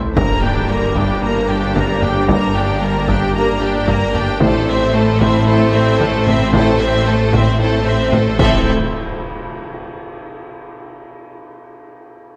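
A straight 4/4 pulse is driven by a taiko ensemble struck with heavy sticks, its vintage, band-limited sound sitting in the background of this tense, brooding cinematic cue. The piece blends orchestral and electronic writing, with a huge, dark impact at 0.2 seconds as the harmony settles on G minor before shifting to A minor at 4.4 seconds. Warm, lush violins carry the bowed melody with smooth vibrato over a second violin line, while focused violas, close cellos and distant, very quiet double basses fill out the accompaniment and bass. A very quiet section of dark French horns holds soft-attack chords far back in a roomy space, and a swirling, nasal analog pad with phaser and chorus sustains chords beneath them. On the electronic side, a mellow, tine-like FM pluck plays arpeggios, a deep square-and-sine analog bass plays a riff, and a thick detuned saw bass with chorus adds weight at the bottom. 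A second impact lands at 8.4 seconds as this fragment of a longer piece breaks off, and the whole is bathed in a wet scoring-stage reverb.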